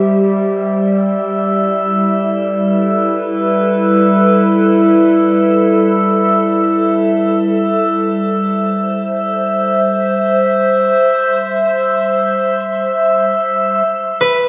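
This ambient passage in G major opens on a warbly, tape-like pad holding sustained chords from the very start, its detuned, lo-fi tone softened by chorus, built-in reverb and a shimmer reverb, carrying a nostalgic, mellow glow. At 0.9 s a glass harmonica enters high above it, adding a pure, ethereal texture with smooth, slow-blooming tones that also pass through shimmer reverb, and it rings on until 13.9 s. The music floats in free time, with harmonies drifting from C/G to G6, back to C/G, and finally to Bm, giving the piece a warm, luminous mood. Just before the end, at 14.2 s, a concert harp sounds a brief fingerpicked arpeggio on B4, acoustic and ringing. A lush hall reverb bathes the whole space in a long, soft wash, and the passage, cut from a longer piece, stops along with the pad at 14.5 s.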